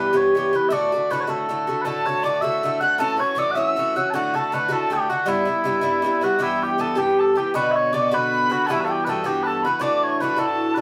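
A mellow, sweet small-pipes melody with vibrato rides up front over bright, metallic picked double strings of Irish bouzouki in this driving, wild Celtic jig excerpt at 106 BPM in 6/8 and E dorian, joined at 1.8 seconds by an airy, chiffy tin whistle second line with lifted highs, all heard as a band playing live in one room with a wet studio reverb.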